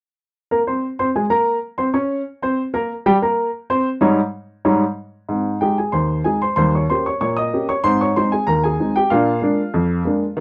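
A woody, polished upright piano sits up front in this jaunty, lively ragtime fragment in a straight 2/4, playing solo from 0.5 to 10.4 seconds across a span from Eb2 to Eb6, moving from an opening strain that arrives on Eb7 into a second strain at 5.3 seconds that steps through Ab, Eb7 and Bb7 harmonies, all set in light reverb and a dark, warm production.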